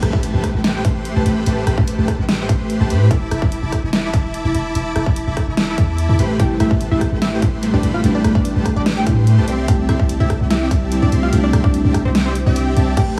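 A half-time 4/4 groove drives this lush, emotional future bass drop, cut from a longer piece, where a thick, detuned supersaw riff with cassette-tape grit, sidechain pumping and digital delay rides over a deep, boomy 808-style bass and a punchy, layered electronic kick with a big-room kit's huge snare, hi-hat, rim click and crash, while a very quiet impact marks the opening 1.5 seconds, glassy, chorused keys sit in the background beside a sawtooth unison pluck with dub echo from 6.4 seconds, and the kick drops out at 12.1 seconds over Am7, E7sus4 and C6 chords in a digital ambience.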